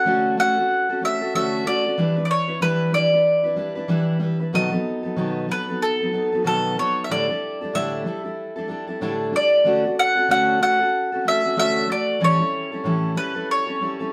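Set at 94 BPM in 4/4 with a 16th-note swing, this indie pop excerpt moves at an easy, loping walk that feels hazy and wistful. A picked mandolin carries the melody from start to finish, its doubled strings giving a woody, up-front voice that sits between A4 and F#5. Beneath it, a fingerpicked steel-string dreadnought guitar supplies the accompaniment across the full 14.1 seconds, ranging from A2 to B4, its pitch colored by a warbly drift that adds to the dreamy haze. The harmony passes through Dmaj7, Em7, B7 and A7sus4 before returning to Dmaj7 and landing on A7. The two instruments sound like a band playing live in one room, wrapped in a wet studio reverb that lends the close, warm tones a soft bloom.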